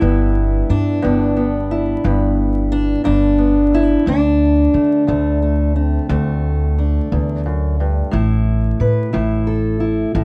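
Soulful and swaggering, this short cut of acoustic country blues moves in a slow, straight 12/8 at 59 BPM, tuned to A4 = 438 Hz and passing from G to D5 at 4.1 seconds and A5 at 8.1 seconds. A boxy fingerpicked archtop guitar carries the melody up front, with audible finger squeak, while a woody pizzicato upright bass on steel strings holds down the low end close beside it for the whole 10.2 seconds. The sound is dry and close, with the feel of a 1970s studio recording and a bed of vinyl crackle.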